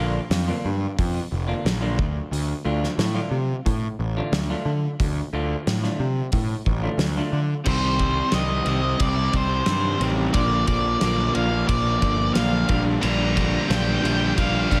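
Quiet-loud alternative rock with a brooding, cathartic mood, heard in a straight 4/4 under a big arena sound with a moderate stage reverb. A clean, fingered semi-hollow guitar plays arpeggios in the background with a subtle chorus, while an overdriven fuzz bass sits up front and a loose indie drum kit with a fat snare, punchy kick and dark cymbals comes in at 0.3 seconds, its pumping room giving the beat weight. At 7.6 seconds a dark, overdriven semi-hollow guitar riff enters, and at 7.7 seconds the second section arrives as the harmony moves from Bb and Dm to Cm, bringing in a fuzzy octave lead guitar whose melody rides high through distortion and analog delay. Near the end, at 13.0 seconds, a bright high-gain guitar adds a heavy riff as the chords settle on Gm7/Bb. This passage is cut from a longer piece.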